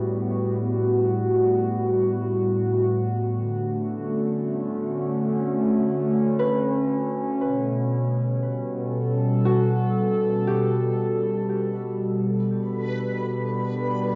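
A warbly, detuned tape-like pad opens this luminous, serene ambient excerpt in free time, holding mellow sustained chords in G lydian that move from Gmaj9 through Dmaj7 and A9 before settling on Gmaj7, its chorus and cassette haze giving it a nostalgic lo-fi glow up front. After a brief opening pluck, a bright concert harp returns with ringing, thumb-plucked arpeggios from 6.4 to 12.8 seconds, touched by cassette tape and analog delay. At 12.7 seconds a reversed, granular texture swells in high above. The home cassette recording sits in a wet studio reverb with a dulled top end.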